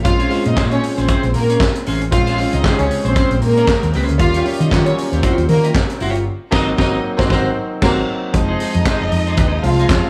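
Disco at 116 BPM with a light swing on the sixteenths and a danceable, glamorous mood, this short cut sets a round, hollow-body fingered electric bass and an up-front vintage drum kit (punchy kick, high-tuned snare, handclaps, hi-hat, dark cymbals and crash, all in gated reverb) under a smooth, bowed string section that sings a second line with vibrato and portamento, while a clean picked electric guitar and an intimate concert grand piano with audible action noise fill in accompaniment over Bbm9, Eb9 and Ab9 chords, the band hitting accents from 6.3 seconds before a new section lands on Fm7 at 8.3 seconds, all set in a light small-room ambience.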